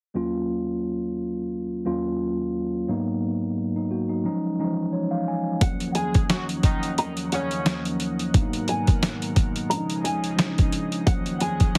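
A gritty, overdriven sampler-style drum kit with a thumpy kick lands up front at 5.6 seconds in this dark, reflective boom-bap hip-hop fragment, joining a mellow tine electric piano that plays from the start with a cassette-tape tint and adds a fill just before, alongside a full-bodied, thumb-plucked nylon-string guitar melody, a lush, detuned pad holding sustained chords through chorus, and tight, clear horn stabs with analog delay from 6.0 seconds, all under light reverb and a heavily compressed radio sound.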